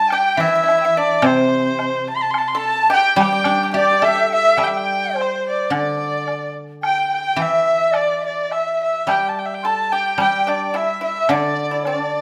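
In a rubato 2/4 at 107 BPM, this festive, pastoral Chinese chamber ensemble piece is cut from a longer work and set in a moderate recital hall: a rich, biting, nasal bowed erhu leads up front with light vibrato and portamento, a hollow bamboo dizi with a buzzing membrane carries a pure, straight-toned, tongued second line, a dry, percussive pipa joins that line but drops out at 4.2 seconds before returning at 9.1 seconds, a mellow, ringing, silvery guzheng accompanies up front, and a dark, close woodblock sounds in the background.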